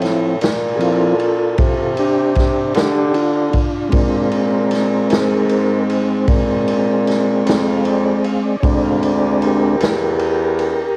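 A smooth tonewheel organ with key click, chorus vibrato and a stopped rotary speaker takes the solo up front, sustaining chords from Dm7 to Bb7 at 3.9 seconds over a warm bassoon bass line with light vibrato and a vintage acoustic drum kit of punchy kick, medium-tuned snare and dark ride cymbal, giving this brooding, soulful slow blues in 12/8 a home-recorded cassette sound with vinyl crackle and light reverb, cut from a longer piece.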